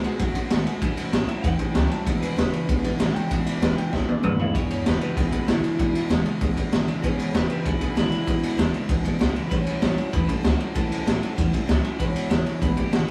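A small-room, live-band sound with a gritty, saturated garage drum kit up front drives this rowdy, retro rockabilly cut at 193 BPM in E mixolydian, where a twangy lo-fi electric guitar through a small old amp carries the melody, a second electric guitar at the edge of break-up plays a riff in the background, a very quiet full-bodied dreadnought acoustic with finger squeak picks out the accompaniment, and a woody, thumpy gut-string upright bass anchors the B7, A7 and E7 changes, with a drum fill from 3.9 to 4.5 seconds leading into the second section.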